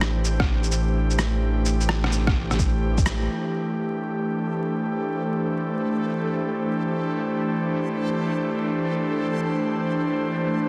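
Ghostly and melancholic, this future garage excerpt in free time opens on an Am7 chord with an airy, breathy pad pumping under sidechain and chorus, a round sine sub bass and a muffled, overdriven rim click and shaker, joined at 0.4 seconds by a deep layered electronic kick. All of these save the pad drop out around a band accent at 3.1 seconds, leaving the pad on D5 as a bright, reversed granular texture swells in the background from 4.4 seconds, the whole mix dense and heavily limited with vinyl crackle and a lush hall reverb.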